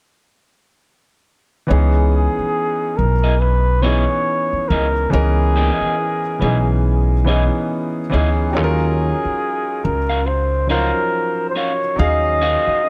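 A slow 4/4 groove at 70 BPM swings its sixteenths gently, giving this short R&B excerpt in C# dorian a smooth, sultry ease. From 1.7 seconds the mellow flugelhorn sings the melody up front in a jazz style, its light vibrato and scooped notes lending a vintage flavour. Underneath, a warm concert grand piano supplies intimate accompaniment with deep bass, long sustain and audible action noise, while a woody, growly pizzicato upright bass sits prominently and thumpy in the low register. At 3.2 seconds an electric guitar through a small old amp adds a picked second line, slightly broken-up and lo-fi, bathed in spring reverb. The harmony rests on C#m9 before moving to D#m9 at 8.5 seconds, all framed by the natural ambience of a small room.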